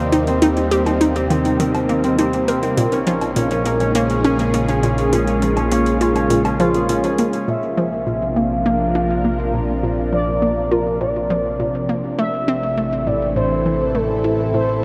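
A lush, up-front unison pad with chorus and phaser, ringing thumb-plucked concert harp arpeggios through delay, and a fat, saturated analog bass open this cosmic, luminous stretch of sequencer-driven ambient space music together. They are joined by a hollow, bouncy square pluck riff, faint electronic hi-hat and woodblock, and a barely audible breathy wind-like texture, until at 7.5 s the percussion and wind drop away and a smooth, expressive synth lead with vibrato and cassette-tape colour takes the melody, all soaked in a huge, dreamy reverb.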